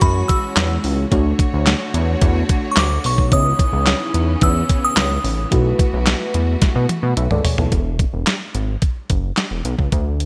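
Early-eighties boogie funk at 109 BPM in E mixolydian, smooth and danceable, moving through E69, Dmaj7, C#m9 and B7sus4 before landing on Eadd9, in a bright digital production with light reverb. A glassy, crystalline synth bell carries the melody until 5.2 s over a lush, dreamy FM electric piano layered with a soft pad, treated with chorus and phaser, and intense bowed studio strings with vibrato holding sustained chords. Up front, a glossy chorused synth bass with filter sweeps and a thumpy, tape-toned detuned 8-bit drum machine with handclaps, hi-hat, snare and toms drive the groove, with a drum fill from 6.6 s; only the bass and drums carry on past 7.9 s in this fragment of a longer piece.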